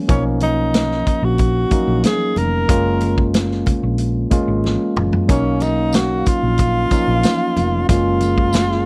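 A straight 4/4 groove at 92 BPM, carried by a punchy, up-front vintage drum kit with a fill from 4.6 to 5.3 s, sets up this smooth, romantic stretch of lush 1970s-style soul, cut from a longer piece and tuned to A4 = 443 Hz. A breathy, whispered tenor saxophone sings the intimate melody over a barky, lightly overdriven tine electric piano, a dark, round hollow-body bass and very quiet thick-skinned congas, moving between Bmaj9#11 and F#maj9. At 5.3 s a mellow French horn section adds soft sustained chords and a jingly tambourine joins faintly, all captured in a dry, close small-room studio sound.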